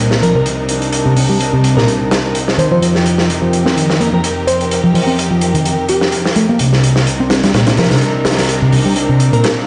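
Swaggering and raw, this breakbeat excerpt in C minor rolls along at 127 BPM with a lightly swung feel, as dark, woody bowed strings hold lush chords, a growly, punchy picked electric bass drives an overdriven riff with delay, a crunchy, gritty acoustic drum kit pushes its hi-hat and snare up front, a bell-like FM electric piano sparkles softly in the background through chorus and a small-speaker tone, and a faint electronic swell closes things at 9.6 seconds, all heard in a stone room on a big sound system.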